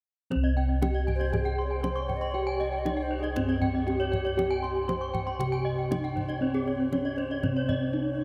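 Brilliant and shimmering, this Balinese gamelan excerpt at 118 BPM in C pelog carries a mellow bronze metallophone melody struck with padded mallets over dark, round bossed gongs up front and a deep, close kendang, while two bright, airy horn-mallet metallophones ring out arpeggios with the beating shimmer of paired tuning, and a crisp bamboo xiao with vibrato enters in the background at 1.2 s, the ensemble set in a vast, echoing space.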